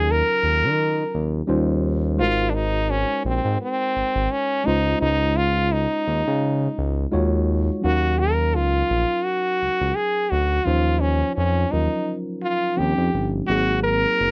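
R&B and neo-soul in a soulful, smooth vein, this brief cut from a longer piece sets a brilliant, nasal stopped French horn up front on the classical-style solo melody over a worn, slightly out-of-tune tine electric piano heard clean through a combo amp, while a sustained, fast-attack synth bass blending sawtooth and triangle tones sits forward beneath, all in a dry space with little reverb, with a loose sixteenth-note swing and jazzy ninth, eleventh and thirteenth chords shifting into a second section at 7.8 seconds.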